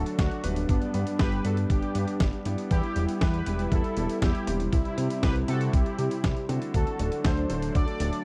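A straight 4/4 italo disco groove, bittersweet and danceable, rides on a thumpy, up-front electronic kick and a gritty, compressed sampler-style kit of hi-hat and snare, while a fat, nasal, saturated analog bass anchors the low end beneath a bold, brassy synth melody with chorus, vibrato and tape echo, a smooth, slow-attack analog pad holding sustained chords and a grand piano adding short background stabs, all in a dry, close 1970s-style studio sound.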